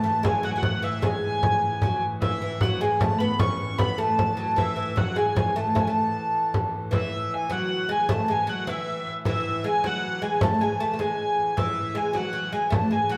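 In a straight 6/8 at 103 BPM counted in dotted quarters that gradually speeds up, this rustic, ancient medieval dance excerpt features a dark, woody wheel-bowed hurdy-gurdy up front on the high melody, a bright, plectrum-plucked fretless oud with double strings playing a second line below it, a nasal, reedy hurdy-gurdy droning low in the background, and a small, close and dry frame drum struck with hard hands entering at 0.2 seconds, all performed live in one room with a wet large-studio reverb and moving into a new section at 6.9 seconds.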